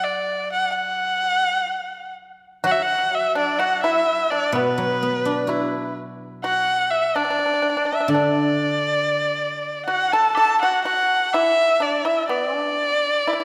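This Chinese traditional chamber ensemble piece, cut from a longer work, has a pastoral yet festive mood and moves in a free, rubato 4/4 at about 63 BPM in the D gong mode. A clear, focused solo erhu carries the melody up front, its bowed line shaded with vibrato and portamento. Beneath it, an acoustic guzheng played with fingerpicks gives a silvery, ringing accompaniment that also sits forward. A dry, percussive pipa joins at 2.6 s with a warm second line. Near the close, a very quiet, bright woodblock enters at 10.3 s, and the guzheng falls away at 11.1 s, all of it set in a wet concert hall reverb.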